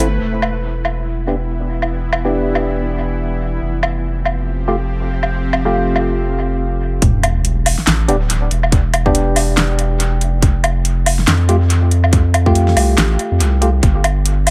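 A tense, string-like drone, hollow organ stabs carrying dub echo under a filter sweep, a thick saturated sub bass and an overdriven drum kit of fat snare, metallic hats, handclaps and woodblock open this meditative, cavernous deep dubstep piece in a swung half-time feel, until at 7.0 seconds the drone falls away and the drop lands with a tight, up-front electronic kick and a background sub drop impact in the echo-heavy mix, the drone returning only briefly at 14.4 seconds.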